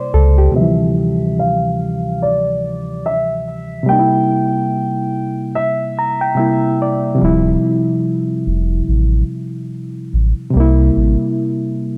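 Light reverb and a small-room ambience wrap this hazy, nostalgic lo-fi hip hop fragment, which sways with a gentle swing and is cut from a longer piece. A reedy, barky electric piano carries the accompaniment throughout, softened by cassette-tape colour and a low-pass filter as it alternates between C7 and Dm11 chords. A woody, vintage upright piano with long sustain sings the melody from 0.6 to 6.8 seconds, while a deep, full sub bass with an added octave sounds only briefly at the start before returning from 7.2 to 11.2 seconds.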